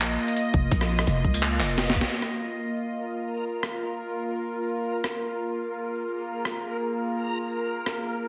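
Heavily compressed, radio-like sound sits in a wet digital room reverb, giving this short cut from a longer half-time drum and bass track a spacious yet tense mood at 170 BPM in 4/4. It opens on a drop where a growling, buzzy 808-style bass is joined at 0.5 s by a tight, layered electronic kick, both falling away at 2.0 s on a band accent after a drum fill from 1.8 s. Throughout, an up-front bowed-like drone holds sustained string-like chords with a slow attack, vibrato, a ring-modulated edge and a pumping sidechain feel. The boom bap sampler-style kit stays prominent, gritty and pitched down, its overdriven handclaps, hi-hat, rim click, tambourine and high-tuned snare ringing in a large room. From 3.0 s a reversed, swelling texture rises in the background, its detuned granular shimmer dreamy and bright against the tension of the drone.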